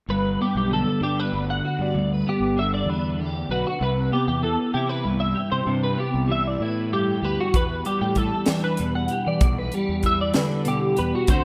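Math rock and midwest emo in a bright, intricate 6/8 at 64 BPM in G major, this short excerpt moves through Gmaj7, Cmaj7 and Em7 as a clean, picked electric guitar carries the accompaniment and a compressed twelve-string electric guitar plays arpeggios, both up front and treated with ensemble chorus, over a growly, punchy fuzz-overdriven fingered bass, until a crisp, polished fusion drum kit with a high-tuned snare, punchy kick and hi-hat enters at 7.5 s, all within a rough home demo mix with light reverb and small room ambience.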